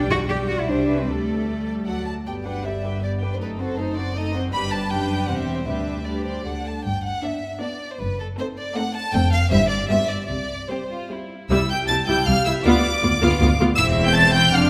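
Set in a quick, straight 3/4 at 157 BPM, this cheerful, lively classical-period movement for string orchestra opens in G major before turning toward C major from 9.1 s. The first violins carry the melody up front, reaching from A4 to A6 with vibrato, while a second violin line sits just beneath, and violas fill in the accompaniment. Double basses anchor the low end from the start, joined by cellos at 0.1 s on the bass line. Every section is bowed sul tasto with a soft attack, giving the ensemble an intimate, close chamber sound, and the lower strings use a lighter vibrato than the lead violins. A concert hall reverb with a 1.8-second decay wraps the playing in a generous, wet space, and the passage is cut from a longer piece, returning to its opening material near 11.5 s.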